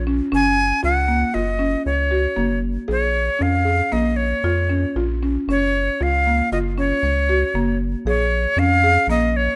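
Contemporary chamber music in an uneven 5/4 metre, playful and hopeful, this short excerpt moves at a straight, steady pace over a simple alternation of F# and A#m7. A breathy, bright jazz flute carries the melody up front with vibrato and a reedy chiff, while a rubbery square-wave bass sits dark and bouncy beneath it. A woody, buzzing marimba played with medium mallets spins arpeggios through the middle, all captured close and dry with little reverb.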